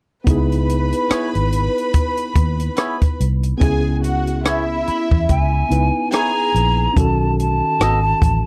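A dry, close 1970s-style studio sound frames this lush, smooth and cinematic soul fragment in C# minor at 72 BPM, with swung 16ths over a 4/4 pulse and a move from C#m7 to B7 at 7.0 seconds. A compact acoustic cocktail kit with a punchy kick and a dark, round, foam-muted fingered electric bass sit up front. Around them, a worn, slightly out-of-tune tine electric piano with light overdrive, a bright, twangy clean guitar riff and an intimate, bowed sul tasto string section with soft attack fill out the arrangement, and a hollow, pure concert flute joins at 4.9 seconds with a tongued melody, vibrato and slapback echo.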